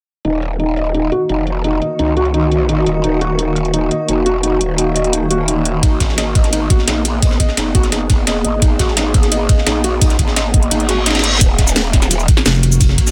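Tense and mechanical, this dark technical drum and bass cut runs at 172 BPM in Eb minor, moving from Ebm to Abmadd9 and back. A swarming, detuned drone of sustained chords pumps against the sidechain beneath a felt-muted upright piano, whose soft, intimate arpeggios carry audible action noise and tape echo under a filter sweep. A growling, wobbling bass sits up front, saturated and bright with chorus and overdrive, while the filtered drum and bass kit offers a cracking snare, metallic hats and cabasa. At 5.8 seconds a knocking electronic kick and a gritty, compressed breakbeat kit with a high-tuned snare and ride cymbal join in. The kick drops out briefly as a reverse cymbal leads into the drop at 11.4 seconds, where a thick FM bass growls on F1 before this fragment of a longer piece cuts off.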